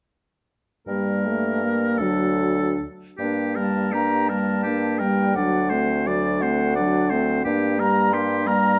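An airy, distant concert flute enters with the melody at 3.6 seconds in this slow, elegiac and melancholic classical movement for wind quintet in G minor and 6/8, where from 0.9 seconds a clear oboe with light vibrato plays the second line, the clarinet and a punchy French horn accompany, and a soft-attacked, roomy bassoon takes the bass, moving with rubato at 47-59 BPM through Gm and D harmonies in a moderate recital hall captured with close, detailed microphones, cut from a longer piece.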